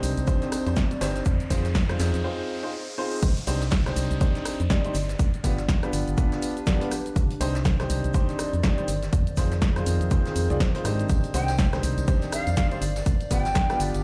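A boxy grand piano riff with dub echo opens this bittersweet, energetic piano house track at 122 BPM in C harmonic minor, pumping against a hollow, organ-like FM bass, a warbling, nostalgic lo-fi pad, a punchy analog drum machine, a brushed jazz kit in the background and a very quiet tambourine, while a riser and downlifter carry through a short break into the drop at 3.2 seconds. An up-front electronic kick drives the swung groove over a Cmadd9, Fm7 and G7 progression, and the dry tambourine returns near the close. At 11.3 seconds an airy, distant concert flute with vibrato and dub echo adds an expressive line before this section of a longer piece cuts off, the whole mix sitting in a large studio reverb.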